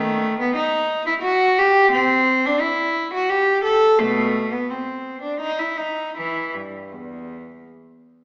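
In a rubato 3/4 at about 77-89 BPM, this short, solemn fragment of a baroque-style suite movement in E minor features a single bowed cello, up front and playing alone from 0.0 to 7.7 s across a range from E2 to A4, its rich, reedy gut-string tone shaded with light vibrato in period style, set in the wet reverb of a recital hall with a small-speaker character, cut from a longer, grave piece.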